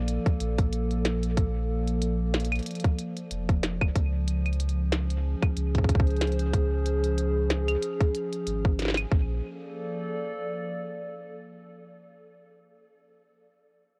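A worn, cassette-like haze hangs over this short IDM excerpt, its digital ambience wavering with old-tape pitch drift. At 93 BPM in 4/4 with a light swing on the sixteenths, the mood is playful and intricate. Up front, a nostalgic, lo-fi pad of detuned square and triangle tones holds mellow sustained chords with a slow attack and long release, treated with chorus and its own reverb. It moves from Bbmaj7 to Dbmaj7 at 4.0 seconds before settling back on Bbmaj7. Beneath it, a round, deep sine sub bass sits forward in the mix, while a tight, overdriven electronic kick sits alongside a glitchy kit of claves, clicky hats and a tiny snare, also overdriven and re-recorded in a small room. The drums and bass drop away by 9.4 seconds, and the warbling pad rings on until 11.7 seconds.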